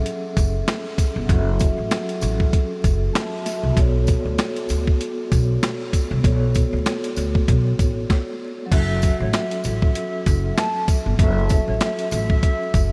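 Vinyl crackle and a light small-room reverb frame this moody, gritty boom-bap hip-hop passage, cut from a longer piece, at 97 BPM in 4/4 with a lazy 16th-note swing and tuning set slightly flat at A4 = 436 Hz. Up front, a compressed, pitched-down sampler-style kit drives the groove with a thumpy kick, a high-tuned snare, hi-hat and crash cymbal. A woody pizzicato upright bass with steel-string bite sits just beneath the drums, while a jingly tambourine stays close and dry in the background. A filtered vibraphone played with soft mallets supplies the harmony, its ringing metallic tone shimmering with fast motor vibrato and a boxy room color over F#m7 moving to Bm9. After a brief stop from 8.1 to 8.7 seconds, the harmony returns to F#m7 and a breathy, hollow jazz flute enters with a straight tone and soft attack, sounding distant and filtered with tape echo.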